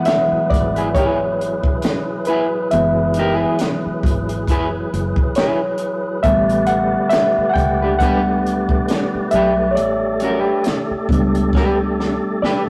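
R&B and neo-soul at a late-night, sultry 68 BPM with a swung sixteenth feel, where a gritty, reedy overdriven electric piano solos up front through a combo amp over a fat tonewheel organ with key click, percussion and slow rotary swirl, a compact cocktail drum kit with a punchy kick and high-tuned snare, a bright, foam-muted fingered bass, and a twangy electric guitar at the edge of break-up, moving from F#9sus4 to A9sus4 at 6.2 seconds before a drum fill at 11.5 seconds, all inside a rough rehearsal-room recording with stone room reverb.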